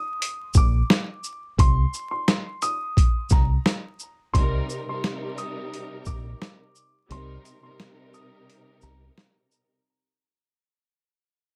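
Reflective and gritty, this boom-bap hip-hop excerpt moves at 87 BPM with a swung 16th feel in C minor, resting on a single Cm7 chord, and vinyl crackle runs throughout. A dark, woody upright piano carries the high melody through filters and tape echo, while a compressed, pitched-down sampler drum kit with a thumpy kick, medium-tuned snare, hi-hat and shaker sits up front beside a round, punchy fingered electric bass. At 4.3 seconds a lush bowed string section joins with vibrato and portamento, and the piece is shaped by breaks and a fade-out in a dry, close sound.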